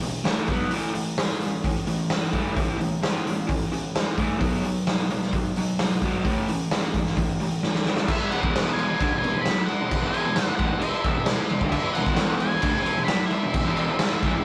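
Rowdy and raw, this garage rock excerpt puts an overdriven, double-tracked electric guitar riff up front over a punchy, gritty acoustic drum kit of crash, hi-hat, kick and snare, and after a drum fill at 7.6 seconds a dark octave-fuzz lead guitar enters at 8.1 seconds to carry the melody, captured as a rough rehearsal-room recording with tube saturation and moderate reverb.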